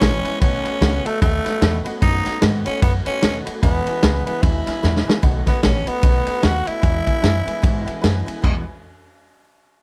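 Swung eighths in 4/4 drive this rowdy, retro rockabilly clip, where a raspy, growling tenor saxophone carries the melody up front with vibrato over a thumpy, woody upright bass, a punchy vintage drum kit with dark cymbals that throws in a fill at 4.8 seconds, a bright picked steel-string acoustic guitar in the background, and a jangly, metallic tack piano that adds a honky-tonk fill at 7.2 seconds, the whole mix sitting in a light reverb.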